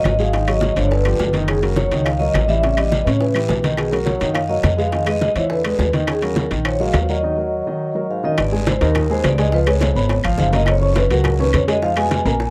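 A vibraphone with medium mallets carries the melody, its metallic, ringing tone shimmering with a fast motor vibrato in a boxy small room. This fiery, driving Afro-Cuban jazz excerpt runs at 209 BPM in a straight 4/4. An up-front upright bass gives a woody, dark, thumpy pizzicato pulse on gut strings. Underneath, a warm grand piano accompanies with an intimate, natural sound, short sustain and audible action noise, while a mellow bassoon with light vibrato plays a classical-style second line in the background. The percussion mixes low-tuned congas with a thick-skinned, vintage, band-limited sound, round bongos, close metal-shelled timbales, woody claves and a raspy guiro. The harmony moves through rich chords such as Bmaj9 and Gbmaj9, a break arrives at 7.2 seconds, and a drum fill lands at 12.3 seconds in a dry, close 1970s-style studio sound with light reverb.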